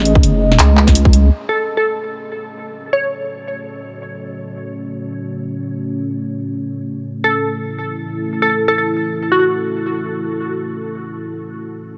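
A heavy, tense half-time drum and bass piece in free time and F# dorian, cut from a longer track, opens with a tight, up-front electronic kick and a layered kit of cracking snare, handclaps and hi-hat alongside a deep, saturated wobble bass, all of which stop by 1.3 seconds. A dark, full-bodied analog pad sustains chords throughout, beginning on F# minor and carrying sampler grit, chorus and sidechain pumping, and from 1.3 seconds a filter sweep moves across it. A crystalline wavetable pluck with chorus and dub echo surfaces at 1.5 and 7.2 seconds, all inside a huge ambient reverb.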